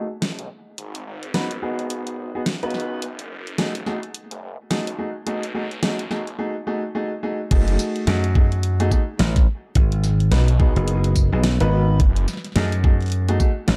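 Swaggering and gritty, this glitch hop cut from a longer piece moves at 107 BPM in 4/4 with a swung sixteenth-note feel, set in F# dorian and tuned slightly flat of standard pitch. A clear, boxy baby grand piano plays stabs over chords such as G#m7, F#m69 and B6, treated with sidechain pumping, tape echo and a low-pass filter that sweeps through the build-up from 0.0 to 7.5 seconds. Underneath, a thick, swirling detuned saw bass sits up front, saturated with overdrive and a phaser, while a layered dubstep kit brings a huge snare along with crash cymbal, hi-hat and tambourine. At the drop at 7.5 seconds a knocking electronic kick punches in up front, and a bright, punchy slap bass joins at 8.1 seconds, giving the second half a heavier push. The production is dark with light reverb.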